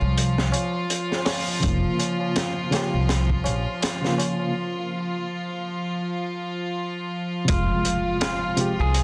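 Trip hop with a cinematic, hypnotic mood and a swung sixteenth-note feel, cut from a longer piece. A reedy electric piano with fast tremolo and tape echo plays the accompaniment over sustained, bowed chords from a rich chamber string section, whose gut-string, period-style tone carries vintage 12-bit sampler grit. A woody pizzicato upright bass sits up front beside a crunchy breakbeat kit of punchy kick, high-tuned snare and hi-hat, dark and rolled-off in a small room. A low-tuned, ringing tabla sits close and dry in the background until 4.5 seconds. At 7.5 seconds a bright, twangy electric guitar at the edge of break-up takes the melody with tape echo, and an electronic impact joins in the background at 7.7 seconds. The dense, heavily limited master carries light reverb.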